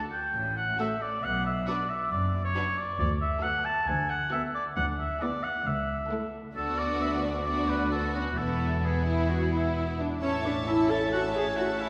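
A clear, up-front oboe opens this cheerful, lively classical-period movement at 0.1 seconds, its soft attack and light vibrato carrying a second line between F#4 and A5 in the church's roomy acoustic. Cellos and double basses enter just after with the bass, the basses focused and close yet sitting in the background, and by 0.8 seconds the bowed string body fills out: a lush, focused violin section carries the melody while a second, more distant violin section plays a second line and violas supply a smooth, even accompaniment. At a quick 134 BPM in straight 4/4 and A major, the harmony moves through B minor and A over C# before settling on E. At 10.2 seconds a solo bassoon adds accompaniment and a tight French horn section sustains chords in the background as the music arrives on A. A wet church reverb with a 2.8-second decay surrounds the ensemble, and the passage is cut from a longer piece.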